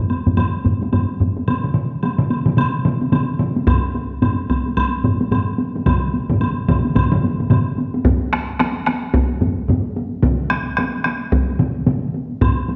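A hard-stick taiko ensemble and a distant, woody woodblock open this ceremonial, driving slice of Japanese traditional taiko drumming at 110 BPM in swung 4/4, joined almost at once by a second, heavy-stick ensemble played close and up front, then by a heavy-stick solo taiko at 1.5 s and a dry, close hard-stick solo taiko at 3.7 s, the whole mix bathed in a wet recital-hall reverb and colored by worn, warbling cassette tape with pitch drift.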